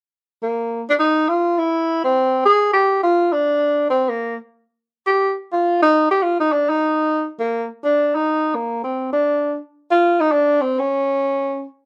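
A dark, warm production with light reverb frames this short jazz fragment, cut from a longer piece. A lone tenor saxophone carries the whole passage, playing solo from 0.4 to 11.6 seconds with a mellow, soft-attacked tone that sounds distant and roomy yet sits up front. The tempo is a brisk 206 BPM in 4/4, with a gentle swing on the eighth notes that gives the line a cool, swinging mood. The horn stays in a modest register between Bb3 and Ab4, and the tuning sits slightly below standard pitch at A4 = 437 Hz. A first section runs until about 9.7 seconds, when the phrase moves into a brief contrasting passage that closes the clip.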